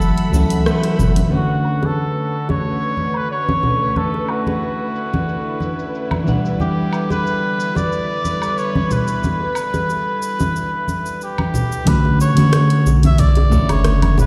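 Played into a bare room through a big sound system, this relaxed, smooth sunset chillout fragment in B minor at 91 BPM is bathed in plate reverb, while a soft, veiled cup-muted trumpet carries the jazz-style melody through gritty 12-bit sampler texture and tape echo. A clean, hollow-bodied semi-hollow electric guitar plays fingered accompaniment, dark sul tasto strings float beneath a low-pass filter that is swept, and a filtered deep house kit of hi-hat, rim click, shaker and woodblock sits under bright, close congas and bongos. The round, warm sine sub bass sounds only briefly at the start, the strings drop out at 11.8 seconds, a punchy electronic kick arrives at 11.9 seconds, and the sub bass returns at 12.9 seconds.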